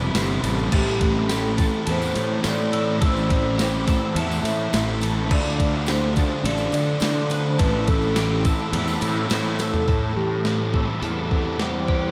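A twelve-string electric guitar playing clean, compressed arpeggios under ensemble chorus and tape echo, an overdriven semi-hollow guitar with reverse reverb and a dark, thick fuzz guitar with analog chorus open this melancholic, brooding shoegaze and dream pop excerpt at 105 BPM in A minor, over a growly, punchy fuzz bass up front and a gated 80s digital drum machine with a thumpy kick and gated reverb snare, joined by a jingly tambourine in the background and, from 0.7 seconds, a velvety, detuned synth lead with a soft attack, all drifting through a dreamy, reverb-soaked mix from Cmaj7 and Am7 to Dm before a drum fill at 9.6 seconds.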